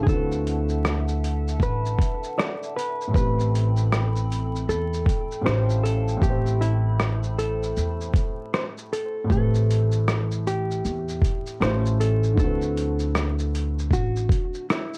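A dark, hazy lo-fi hip hop excerpt steeped in vinyl crackle, where a clean hollow-body jazz guitar carries a melancholic melody through analog delay over a felt-muted upright piano with audible action noise and tape character, a woody pizzicato upright bass and a gritty, overdriven sampler-style drum kit of thumpy kick, hi-hat, rim click and shaker, while a warbling, nostalgic chorus-soaked pad holds sustained chords until 9.3 seconds.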